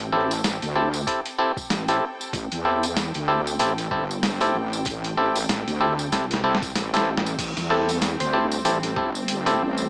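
Glitch hop at 95 BPM in A minor, this playful, swaggering excerpt from a longer piece rides a swung sixteenth-note feel over a single Am7 chord. An up-front wobble bass, heavy and saturated with chorus, anchors the low end while an overdriven clav, bright and twangy through a combo amp, punches stabs with sidechain pumping and digital delay. A gritty, pitched-down boom bap sampler-style kit brings a medium-tuned snare, hi-hat and crash, joined by a jingly, dry tambourine and a thumpy electronic kick from 1.1 seconds, with a drum fill from 6.1 to 7.4 seconds. Behind them, a biting symphonic string section pumps in the background, and at 7.4 seconds a floating chamber string section adds soft sul tasto chords with 12-bit sampler grit. A tearing oscillator-sync lead slips in briefly at 7.7 seconds, edgy and touched with vibrato, chorus and delay. Light reverb and digital ambience frame it all in a small-speaker sound.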